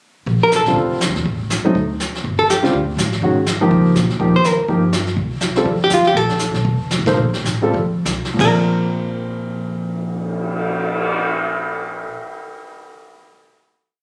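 Relaxed and warm, this short, complete jazz piece sits in small-group swing and bop territory, moving at a swinging 4/4 pace somewhere between 172 and 246 BPM in Bb major, slightly under standard pitch. A dark, clean hollow-body electric guitar carries the melody up front, picking a bebop-style theme that returns, its tone bathed in plate reverb. The baby grand piano, natural with a short sustain, sits close as well, comping in syncopated quartal voicings. The woody, thumpy pizzicato upright bass plays in two, while a vintage brush kit with a fat snare, punchy kick and rolled-off top sweeps brushes across the snare and adds hi-hat, crash and a cymbal swell. The tempo slows from 6.2 to 8.4 seconds, landing on a held final Bb chord, and the whole performance has the roomy, slightly informal sound of a phone recording in a club with moderate reverb.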